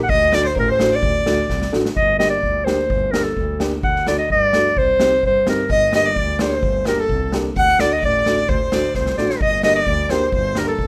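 Bittersweet yet festive, this klezmer passage in 2/4 is carried by a clear, present clarinet melody played up front in a classical style, with a focused, bowed violin adding a close second line that drops out at 1.7 seconds and returns at 5.7 seconds. Beneath them, a distant, earthy bowed double bass with light vibrato and a dark, woody upright piano with short sustain hold the harmony, moving through D, G minor and C minor. An airy street-band drum kit with a boomy kick and medium-tuned snare drives the beat and adds a fill just before 2.0 seconds, all in a rough home demo mix with light reverb.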